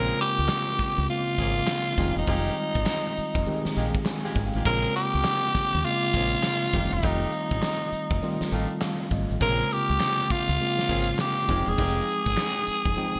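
A swung sixteenth-note groove at 101 BPM in 4/4 drives this punchy, slick new jack swing cut, taken from a longer R&B piece in Bb dorian and built on chords moving between Bbm9, Fm9 and F9. A gated 80s drum kit with a fat snare, tight kick, handclaps, hi-hat and tambourine punches through a bright stone room, while a deep dub fingered electric bass sits underneath with a dark, round, foam-muted tone. Up front, a growling tenor saxophone carries the melody with a raspy, gritty edge, vibrato and a smooth top. A clean tine electric piano heard through its built-in speakers supplies the accompaniment and adds fills around 3.8 and 8.2 seconds. In the background, a jazz-style horn section fires stabs treated with digital delay until 12.1 seconds, and a grainy, mellow tube shaker ticks very quietly. The bright 1980s-style digital production is bathed in a lush hall reverb.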